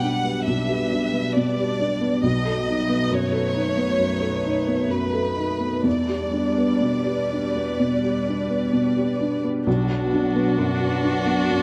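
A felt-muted upright piano sits up front in this short, melancholic and fragile neoclassical passage, its soft, intimate tone carrying audible action noise as it accompanies a rich chamber violin section that sings the melody with expressive vibrato. Beneath them an evolving wavetable pad holds sustained chords with a morphing, warbling, vintage character, treated with chorus and its own reverb and kept in the background, while the harmony moves from G/B through B7 and Em7 to Bm in an unhurried rubato 4/4. At 9.7 seconds a single clear viola joins on D4 with an intense, bowed tone and a smooth top, all heard through close, detailed microphones in a moderate recital hall ambience.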